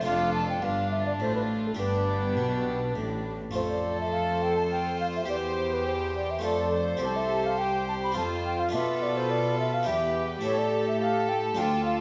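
Classical baroque-style concerto movement in triple time, festive and lively, where a pure, wooden baroque flute carries the melody over a rich violin section also on melody, a close second violin line, a bright, dry Italian harpsichord, a viola section in the background, and a nasal, gut-strung cello section on bass joined by the double bass section until 3.5 seconds, all set in a moderate recital hall reverb.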